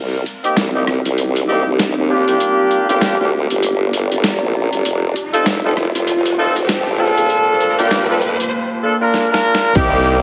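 Funky, playful glitch hop at 98 BPM with a swung 16th feel, this build-up excerpt sets a wobbling, chorused formant-sweep bass and tight, vintage jazz-style horn stabs with 12-bit grit and dub echo up front over a gritty, overdriven, pitched-down boom bap drum kit, while a warbling, nostalgic lo-fi pad with phaser sits in the background alongside an electronic riser that ends at 8.5 s, a drum fill runs from 9.1 s, and a punchy electronic kick and grainy egg shaker arrive at 9.8 s, all moving through Cm7, Gm7, F7 and Bbmaj7 in a lush hall with a heavily compressed radio sound.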